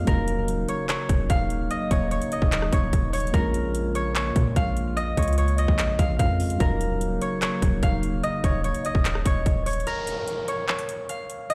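A bright, ringing, fingerpicked concert harp melody with delay opens this eerie, hard-hitting half-time trap and hip hop excerpt, over a boxy, dark grand piano in the background, a hollow, flute-like pad with chorus, a deep sine 808 bass and an up-front overdriven trap kit of hard-clipped kick, metallic hats, handclaps and rim clicks, set in a big reverberant room, until the pad stops at 9.8 seconds and the piano and bass at 9.9 seconds for a break where an electronic downlifter joins the harp and drums.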